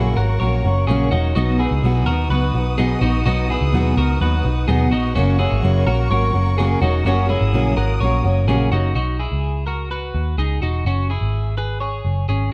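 Indie pop at 126 BPM in B major, bright and breezy, where a round, foam-muted vintage electric bass sits up front beside a fingerpicked steel-string acoustic guitar, a bright, clean, compressed twelve-string electric guitar plays arpeggios through tape echo, and a bowed studio string section holds smooth, expressive sustained chords with vibrato and portamento in the background until the strings and acoustic guitar drop out at 8.9 and 9.0 s, leaving the twelve-string and bass to carry the Badd9 and F#sus2 chords in a dark, warm production with light reverb.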